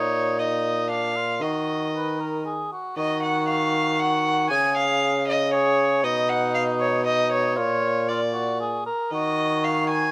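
In a straight 3/4 at 117 BPM, this solemn, rustic renaissance-style consort dance excerpt in Eb minor sets a dark, nasal, gut-string violin melody up front over a cor anglais second line with vibrato and soft attack and a mellow bassoon bass, all three sounding from 0.0 to 10.1 seconds through light reverb and close, detailed microphones as the chords move from Bbsus4 through Ebm, Db, B and Bb back to Ebm.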